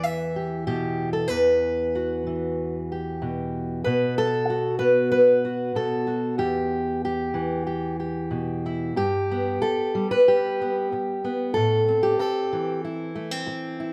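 An up-front, fingerpicked steel-string acoustic guitar plays alone in E minor at 94 BPM in a straight 4/4, its auditorium-bodied tone ringing from low E2 to high E5 with a slapback echo and light reverb, giving this short folk fragment an intimate, haunting mood as it moves through Emadd9, B5 and Em before shifting to G at 9.0 seconds and Am at 11.6 seconds.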